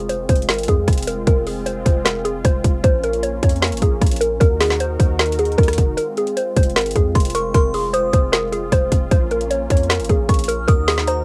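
A melancholic, eerie trap and hip hop excerpt, cut from a longer piece, moves at 153 BPM in a half-time feel in F phrygian, tuned slightly flat to A4 = 436 Hz. Up front, an electronic trap kit pairs a hard-clipped kick and woody snare with metallic hats and rim clicks, carrying cassette tape colour. Beneath it, a deep, boomy 808-style sine bass with a noise layer hits fast and decays, while a smooth, detuned sawtooth pad holds chords through Fm, Bbm and Ebm, softened by chorus and tape. The melody comes from a round, mellow FM pluck with a mallet-like attack, treated with chorus, phaser, tape and analog delay, with a brief break from 6.0 to 6.4 seconds. At 7.2 seconds a crystalline, warbling FM bell enters high above as a second line with a long release, and the dry, home-taped sound keeps the whole track intimate and lo-fi.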